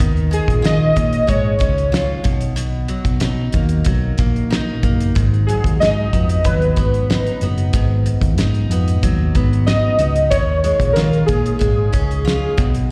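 Laid-back and sunny, this short cut from a longer indie pop and bedroom pop piece moves at an easy 93 BPM in a straight 4/4, tuned slightly sharp to A4 = 443 Hz. A warbly lo-fi synth keys part carries the melody from 0.3 seconds, its detuned triangle and sawtooth tones sounding nostalgic and evolving, with a filter sweep, fast attack and decaying notes dressed in analog chorus and slapback echo. Underneath, a picked steel-string acoustic guitar sits back in the mix with an auditorium quality, treated with subtle chorus, warbly pitch drift and slapback echo. A hollow-body short-scale electric bass gives a dark, round, amped low end up front, while a damped 70s drum kit plays dry hi-hat, tight kick and fat snare. The chords move from D#9sus4 to Bmaj7 and G#m7 before returning to D#9sus4 at 10.3 seconds, all heard as a live gig through the venue's PA with a light recital hall reverb.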